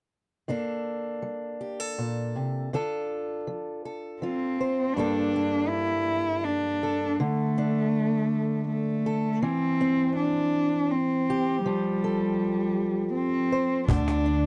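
A fingerpicked acoustic archtop guitar opens this wistful, intimate folk excerpt in three, its close, up-front sound catching the odd finger squeak as it moves through a G dorian chord progression. At 4.2 seconds a dark, woody cello takes the melody, bowed by a single player with vibrato and a slightly nasal, boxy edge. Just before the cut, at 13.9 seconds, a round, punchy fingered electric bass, a vintage brush kit with kick and ride cymbal, and a snappy cajon join for a brief moment, all captured in a dry, close 1970s-style studio sound.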